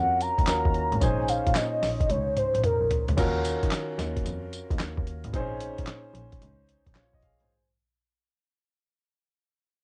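A velvety sawtooth synth lead with chorus and portamento carries the melody for the first 3.1 seconds of this punchy, confident new jack swing excerpt in Bb minor at 111 BPM with a 16th-note swing, over a gritty, compressed sampler-style drum kit with a thumpy kick and handclaps that plays a fill from 2.1 seconds, a biting bowed double bass with light vibrato, and an intimate concert grand piano with audible action noise and long sustain, all moving between Ebm7 and Bbm11 with a tape-dusted, lightly reverberant home-cassette sound before fading out from 3.2 seconds.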